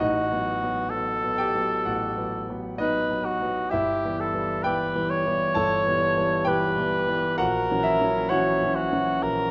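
Solemn and melancholic, this short romantic classical duo excerpt unfolds at a rubato 65 BPM in 4/4, with a mellow cor anglais carrying the melody up front, its light vibrato and smooth top lending a singing, classical poise. A clear concert grand piano with deep bass provides a natural accompaniment, moving through B7/A, Em/G and F#7/A# chords. Both instruments sit in a moderate recital hall reverb that gives the duo a natural sense of space.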